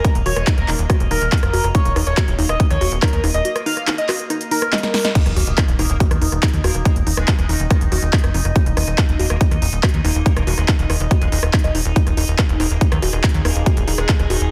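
Psychedelic trance at 141 BPM, intense and alien, opens with a gritty, screaming overdriven lead playing the melody until 5.1 seconds over a resonant drone of sustained chords with moving overtones, a dark, woody wave-folded pluck riff in the background, a punchy, funky analog bass, and a punchy kick and crisp-hatted dance kit with a clipped snare. The kick drops out from 3.5 seconds, a drum fill follows at 4.7 seconds and a band accent hits at 5.0, then the drop lands at 5.2 seconds with a very quiet impact, and from 5.8 seconds a metallic, wobbling FM bass adds an aggressive second line in the background. The master is dense and heavily limited, with light digital reverb and sidechain pumping on the synths.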